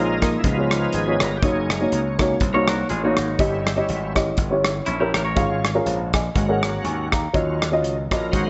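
A shouting tonewheel organ takes the solo throughout this short cut from an uptempo gospel piece, its sustained chords carrying key click, light overdrive, chorus vibrato and a slow rotary speaker. Underneath, a mellow, woody upright piano with audible action noise comps at 122 BPM in a swung 4/4, while a gritty, punchy slap bass and a small-room country drum kit of hi-hat, tight kick and rim click drive the soulful, jubilant feel. A clean, compressed electric guitar adds a picked second line with spring reverb from 2.5 to 5.5 seconds, over chords moving from Db7 through Gb6 to Ebm9.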